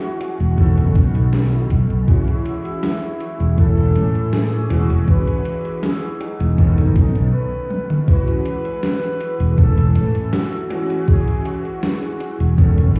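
A mellow flugelhorn with light vibrato and scooped notes carries a jazz-style melody over a clear, clangy electric grand piano with ensemble chorus and 12-bit grit, a warbling lo-fi pad in the background, and an overdriven, gated 80s drum machine, all in a dreamy, faded vaporwave groove at 80 BPM in E major. A growly, up-front fretless bass with analog chorus enters at 0.4 seconds, and a thumpy overdriven kick joins at 0.6 seconds, as the chords move among E6/9, B9 and Amaj7. A break at 7.3 seconds, capped by a drum fill at 7.7 seconds, leads into the next section, and the whole mix sounds muffled, as if heard through a wall on cassette with stone-room reverb.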